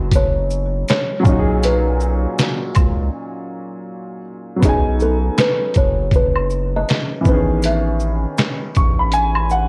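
Lo-fi hip hop in B major at 80 BPM, this dreamy, cosy excerpt moves with a swung sixteenth-note feel over chords such as Bmaj13 and Amaj9#11. A soft, hollow-toned kalimba carries the melody with short, mellow fingertip plucks softened by a low-pass filter and tape echo, falling silent at 9.1 seconds. Beneath it, a woody, slightly detuned upright piano plays smooth vintage accompaniment through a cassette tape haze, while a thick, saturated sine sub bass sits up front with deep sustained notes. A gritty, pitched-down sampler-style drum kit brings a thumpy kick, medium-tuned snare, hi-hat, shaker and handclaps, with maracas, woodblock and group handclaps adding small-room acoustic colour. A break arrives at 3.1 seconds before the second section begins at 4.6 seconds, and the whole mix carries worn, warbling tape with pitch drift, light reverb and small room ambience.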